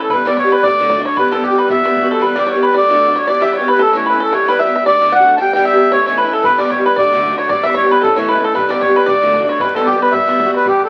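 Heard through the crackle of a very old 78 rpm record and a wet, large studio reverb, this fragment of a wild, driving Celtic reel in E dorian gallops along at 228 BPM with a swung eighth-note lilt over an Em–D–A cycle. An up-front, reedy single-reed accordion carries the tune with a clear, close, dry-tuned voice, while a twangy, percussive bluegrass banjo played with fingerpicks runs a second line alongside it. A bright, boxy picked archtop guitar, finger squeaks and all, drives the accompaniment, and a boomy, open bodhran sits in the background, dropping out at 2.2 seconds and returning at 6.4 seconds.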